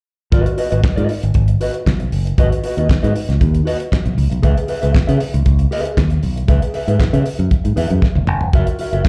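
Heard as a live gig through the venue's PA, wrapped in club reverb, this cut from a longer disco piece moves at 117 BPM in G# minor with a glamorous, sultry mood. A damped 70s drum kit sits dry and up front, with a fat snare, tight kick, hi-hat, toms and handclaps, beside a warm, direct fingered electric bass, while a mellow, dark, clean electric guitar with slapback echo accompanies over G#m7 and C#m7. A drum fill at 8.0 seconds leads into an F#7 chord at 8.5 seconds.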